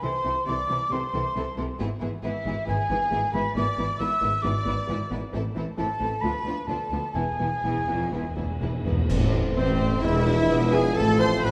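A stormy, restless fast romantic orchestral excerpt opens in a minor key, with a lush, vibrato-rich violin melody over a clear second violin line, smooth viola accompaniment and bowed cellos and double basses, while a pure, up-front silver flute sings above them until 8.8 s. Dark cymbals and bass drum join at 5.3 s, and soft-mallet timpani play a fill from 7.2 s, all played rubato at roughly 123-137 BPM. At 9.1 s a full band accent brings in mellow trombones, very quiet horns and a tuba, followed at 9.6 s by bright trumpet stabs, clarinet and oboe, and at 10.0 s by a dark bassoon, all set in a reverberant concert hall with a dark production.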